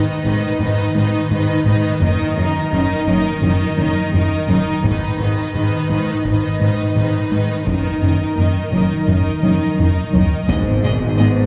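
A round analog bass riff anchors this brooding, tense stretch of hybrid orchestral and electronic film score at 85 BPM in G# minor, moving between G#m and D#m/F# over lush bowed violas, a clear violin second line, distant cellos, expressive double basses and a pure, evolving organ-like pad with ensemble chorus, while a taiko ensemble struck with heavy sticks enters at 4.8 s and plays a fill from 9.4 s into a huge, bright impact at 10.5 s, where a brief violin melody, dark French horns, very quiet trombones and a thick, detuned saw bass join, the whole ensemble set back in a wet scoring-stage reverb.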